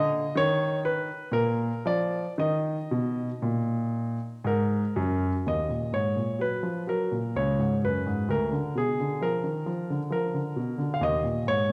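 A warm, natural baby grand piano plays alone and up front in a grave, flowing baroque-style suite movement in Eb minor, in 3/4 at a slow 57-67 BPM with rubato phrasing. The solo spans Db2 to F5, moving through Bb harmony before a new passage settles onto Eb minor at 5.5 seconds, then turns toward Bb/D. A wet recital hall reverb surrounds the instrument in this short fragment of a longer piece.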